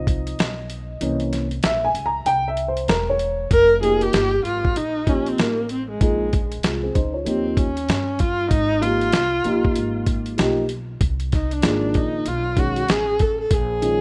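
A dark, bowed viola with vibrato, portamento and analog delay carries the melody from 3.5 seconds in this nocturnal, mellow jazz-hop cut in F minor at 96 BPM with a swung 16th feel, following an opening where a boxy, intimate upright piano with audible action noise and long sustain takes the lead over woody pizzicato upright bass, while a gritty, pitched-down boom bap sampler kit with a thumpy kick and compressed, tape-warm tone sits up front in a dry, rough home-demo mix.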